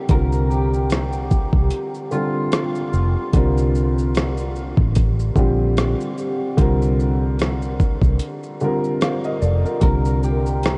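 A woody, slightly detuned upright piano opens this melancholic, nostalgic lo-fi hip hop excerpt at 0.0 seconds, its long sustain softened by cassette tape colour and a low-pass filter as it holds a Fsus24/C chord before moving to Csus2. Almost at once, a thumpy, gritty sampler-style drum kit of kick, hi-hat, rim click and shaker settles into a swung 74 BPM groove in 4/4, overdriven and carrying 12-bit sampler grit with the feel of a small room. A dark, round, foam-muted fingered bass sits up front alongside it, anchoring the low end. Through a small old amp, a slightly broken-up, picked electric guitar carries a short melody bathed in lush chorus and tape echo until 3.3 seconds, then returns at 9.8 seconds. The whole mix floats in a huge, dreamy reverb with a dull top end, giving it a hazy, faded character.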